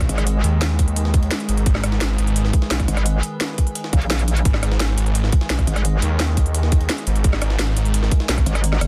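Dark technical drum and bass, aggressive and eerie, heard in a short clip cut from a longer piece. A tight, up-front electronic kick anchors the groove alongside a produced drum kit with a cracking snare, crisp hats and rim clicks, while a gritty, pitched-up jungle sampler-style kit with a high-tuned snare sits in the background, re-recorded in a large room and high-pass filtered. Underneath, a thick, detuned saw bass with chorus and tube saturation pumps against the kick from the start until 8.5 seconds. A bright, metallic wobble bass cuts in briefly at the opening, returns from 2.9 to 6.0 seconds and reappears at the very end. Throughout, a mellow, inharmonic FM drone holds sustained chords with a slow attack, bathed in its own reverb and chorus and also pumping, all within a dense, heavily limited modern master with digital ambience.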